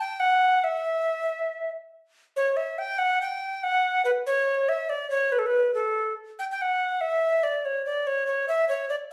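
In a triple metre with a straight, even feel, this short medieval piece moves with a rustic, ancient character. A lone alto recorder carries the whole fragment from 0.0 to 9.0 seconds, placed up front with a woody, airy, warm tone, lifted highs and a breathy chiff at the start of its tongued notes. Vibrato colours the line as it moves within a modest range, and the tuning sits slightly below modern concert pitch. A new section begins around 7.0 seconds, and the piece, cut from something longer, stops shortly after. The recorder sounds as if it were played live in a large studio with a wet reverb, and lossy compression artefacts colour the sound.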